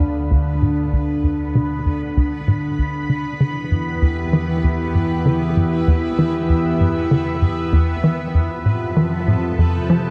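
A dark, warm production bathed in plate reverb frames this short excerpt of cosmic, mysterious space music, with a straight, sequencer-driven pulse moving through Dm, Em and Fmaj7. A tight, punchy sequencer bass drives the riff with plucked, decaying sawtooth tones, while a fat analog bass sits in the background under a filter sweep, and a lush, warbling unison pad holds bright, chorused chords up front. Fading in throughout, a bubbling, resonant texture of random filter steps adds sparkle with its own chorus and reverb.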